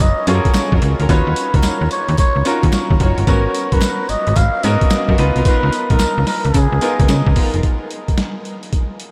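Confident and punchy, this new jack swing R&B excerpt rides a swung groove from a gritty, overdriven sampler-style drum kit with a thumpy kick, high-tuned snare, hi-hat and tambourine, a snappy FM slap-like bass with a metallic attack, a breathy, growling cup-muted trumpet melody with delay, a brilliant baby grand piano and veiled con sordino string stabs in the background, and a barely audible group handclap, all soaked in a dreamy, huge ambient reverb over seventh and extended chords until the harmony drops out at 7.6 seconds and the drums carry on to the end.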